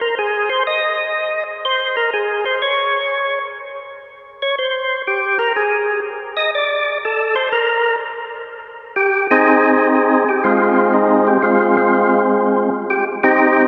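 Jazz at 122 BPM in 4/4 with a swung eighth-note feel sets a soulful, late-night mood in this excerpt from a longer piece. A lone percussive tonewheel organ carries everything, sitting up front and moving between Ab3 and Eb5. Its tone is full and lightly overdriven, with third harmonic percussion, vibrato and a slow rotary speaker giving the notes their character. The opening section stays unaccompanied by chords until a Cm arrives at 8.5 seconds, and a second section begins at 9.4 seconds on a rootless Dbmaj9#11 over Ab, continuing to 13.7 seconds. A wet cathedral reverb with a 5.0-second decay places the organ in the cavernous space of a church or concert hall.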